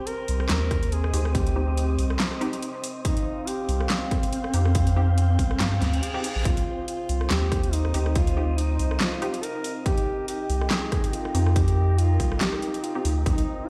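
Deep dubstep in C minor at 141 BPM with a swung half-time feel, heavy and dark, where a mellow, folk-style duduk with vibrato and scooped notes sings through dub echo over a moody, detuned analog pad with chorus and an airy, wind-like tuned noise texture, while a punchy, up-front electronic kick, a tape-warm dubstep kit with a huge snare, metallic hats, handclaps and rim clicks, a round, soft sub bass and muted, filtered chord stabs in the background drive the groove, and a reverse cymbal sweeps in at 5.8 seconds, all heard in a bare stone room on a big sound system.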